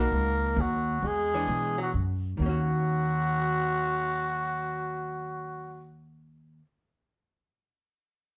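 Small-group swing-and-bop jazz in a cool, late-night Eb minor 3/4 at 132 BPM, this excerpt features a veiled, raspy cup-muted trumpet carrying the melody up front with light vibrato, scooped notes and a growling edge, joined by a clear, present tenor saxophone on a lower second line until both stop at 5.9 seconds, while a clean, hollow-body archtop guitar comps through a rootless Bmaj7, E13 and Ebm7 and a woody, thumpy pizzicato upright bass anchors the bottom, all played live in one room with a wet studio reverb.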